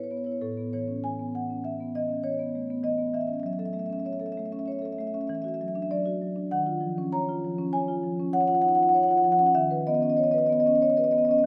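A contemporary classical piece for solo marimba, this short excerpt from a longer work moves at 98 BPM in 5/4, though the rubato feel lets the time breathe freely. The mood is warm and flowing, centered in A lydian with the instrument tuned to A4 = 439 Hz. The marimba, played with soft mallets, sits up front and spans from A2 to A#5, its tone mellow, round, dark and smooth. Harmonies drift from Aadd9 at 0.4 s through F#m7, Esus2 and D#m9 before settling on C#m9/D# at 9.6 s. A wet scoring-stage reverb with a 1.7-second decay surrounds the instrument, giving the lone part a spacious, enveloping halo across its 11.5 seconds.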